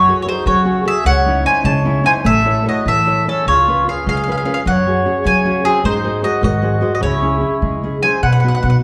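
From the first moment, a bright, up-front mandolin carries the melody on picked double strings, joined by a cup-muted trumpet with a soft, veiled second line and light vibrato, a fingerpicked nylon-string guitar with a full-bodied classical tone, and a dark, thumpy pizzicato upright bass on gut strings. This passionate, romantic Italian folk serenade moves in a rubato 6/8 at 100 BPM in C# harmonic minor, its chords passing from F#madd9 and C#madd9 through C#7 and G#7 to C#m. The players sound as if in a church or concert hall, with recital-hall reverb lingering around this short passage cut from a longer piece.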